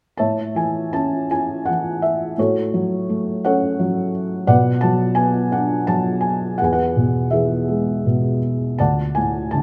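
Swaying in an unhurried, rubato triple metre with elastic, uneven beats, this relaxed and sunny excerpt of lyrical classical solo piano features a felt-muted upright piano, up front, soft and intimate, its thick felt lending a dark, mellow tone, ranging from low D2 to A5 as the harmony moves from A through F#m/A, Bm and E to D at 8.8 seconds, all held in a moderate recital-hall reverb.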